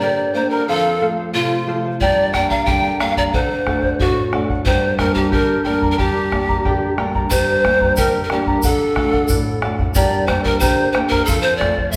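Over a shimmering, fingerpicked charango and a thumb-plucked flamenco guitar with audible finger squeak, a breathy wooden pan flute carries a wistful yet festive Andean folk melody up front, its chiff-edged attack and unsteady vibrato giving it a human sway. A deep, dark bombo enters at 2.0 seconds, close and dry against the wet recital-hall reverb, and a grainy, mellow tube shaker joins at 7.3 seconds as the same section repeats. The chords circle around G minor, F and D in a 2/4 step.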